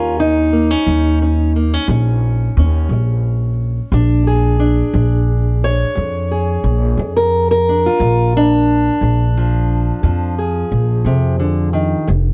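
A fingerpicked parlour steel-string guitar, dark and boxy with fresh strings, carries the melody from the first moment alongside a woody, growly pizzicato upright bass, both up front in light reverb, giving this short cut from a longer acoustic country blues a laid-back, gritty feel in a straight 12/8 as the harmony moves from Eb7 to Bb7 at 3.9 seconds.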